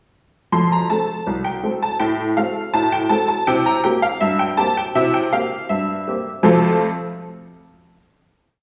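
Ragtime piano in F major at 81 BPM in a straight 2/4, lively and jaunty, with a solo honky-tonk upright piano that sounds detuned, jangly and woody up front, playing a single-line melody over stride bass from 0.5 to 6.9 seconds, moving through F, Am7 and C7 before settling on a final F chord, all bathed in the wet reverb of a recital hall.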